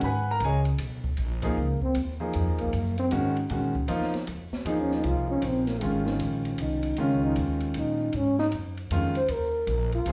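A breathy, lightly vibrato trombone enters at 1.4 s with a soft-attack solo over a spiritual, cool modal jazz waltz at 155 BPM in Bb minor, backed by a warm, deep-voiced grand piano that shares the trombone's slapback echo, a woody, thumpy gut-string upright bass, and a boomy, dark-cymbaled drum kit, all heard through a live club PA with moderate reverb in this swung fragment of a longer piece.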